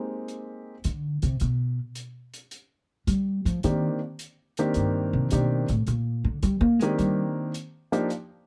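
A woody, thumpy pizzicato upright bass takes the solo, sitting up front in this cool, moody swinging jazz piano trio fragment, with a mellow, short-sustained grand piano carrying the melody over chords that move from Abmaj7 to Cm9 and a small-room acoustic hi-hat ticking quietly beneath, all in a dry, dark mix.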